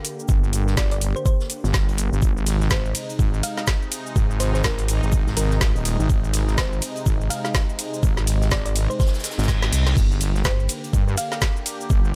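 A swung sixteenth-note groove drives this aggressive, gritty bass house clip, with a knocking, up-front electronic kick and a produced garage kit of woody snare, metallic hats, ride, crash and shaker, shadowed by a very quiet acoustic big-band kit of hi-hat, snare and shaker. A heavy, saturated wobble bass pumps against the kick beneath a bright, evolving sawtooth pad with a resonant filter swell. A round, tine-like thumb-piano-style pluck carries the melody through chorus and digital delay, while an electronic reverse cymbal and drum fill lead into a brief metallic FM bass hit at 10.4 seconds, all in a dry, close sound.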